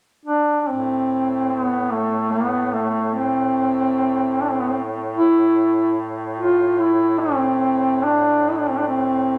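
A large studio's moderate reverb lends this short piece of a longer Caucasian folk lament a solemn, longing air, with a mellow duduk up front from 0.3 s carrying the melody between A3 and F4 in A minor, its light vibrato and distant, roomy tone shaped in a free rubato around 73 BPM in 3/4. From 0.7 s a second duduk, clear and vintage in colour with its own vibrato, holds a quieter drone on A2 beneath it. Both play in folk style, tuned to A4 = 442 Hz, until the recording ends at 9.4 s.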